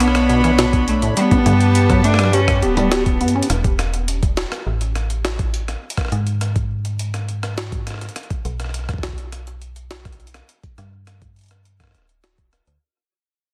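Eerie and intricate, this IDM piece in E dorian moves at 103 BPM in a straight 4/4: a distant, earthy bowed cello with light vibrato carries a delayed melody over a detuned sawtooth pad with chorus, while a rubbery square-wave acid bass with a resonant filter sweep plays tape-echoed arpeggios across Bmadd9 and Gadd9 chords. Beneath them, a metallic, up-front FM bass with tube saturation and a gritty, pitched-up jungle sampler-style kit of congas, hi-hat, rim click and a high-tuned snare run throughout, joined at 0.7 s by a thumpy, compressed electronic kick. The cello drops away at the drum fill at 3.2 s, the pad and acid bass follow at 3.5 s, and from there the bass and drums fade out under light reverb in this cut from a longer piece.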